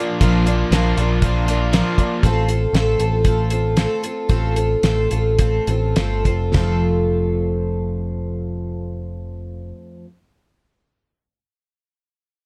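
Folk rock with a heartland rock spirit, this short excerpt carries an open-road mood in 4/4 with a straight feel, sitting between 101 and 119 BPM in F major. A bright, shimmering twelve-string acoustic guitar, picked and octave-doubled, holds the accompaniment up front until about 10.1 seconds, while a crunchy, overdriven electric guitar, double-tracked, plays a riff only in the opening 2.2 seconds. Underneath, a deep, round dub-style electric bass sits low and direct, and a damped 70s drum kit with a fat snare, tight kick, hi-hat and splash cymbal sounds dry, smooth and rolled-off on top until it drops out at 6.7 seconds. The harmony moves from Bb to F/A at 2.2 seconds, where the tempo starts slowing down, before settling on F as a new section begins at 6.5 seconds. Light reverb and a dark, warm production give the whole a close, mellow glow.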